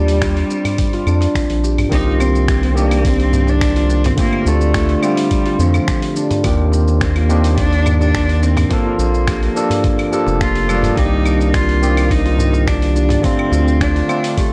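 This excerpt of organic downtempo opens in C dorian at 106 BPM in a straight 4/4, with a mystical, warm mood. A clear, bowed cello carries the melody with smooth vibrato, set distant and touched by tape echo. Alongside it, a mellow concert harp rings out fingerpicked arpeggios through its own tape echo. A round, deep analog bass sits up front with a dark, sustained filter pluck and sidechain pumping. A gritty, thumpy electronic kick, a dusty soul sampler-style kit of claves, finger snaps, hi-hat and shaker, and a very quiet, close darbuka struck with hard hands fill in the groove. At 1.9 seconds a barky, overdriven tine electric piano enters through a combo amp, also pumping with the sidechain, as the chords move through Cm7, Dm7, Ebmaj7 and Bbmaj7, all in a dry, cassette-tinged recording.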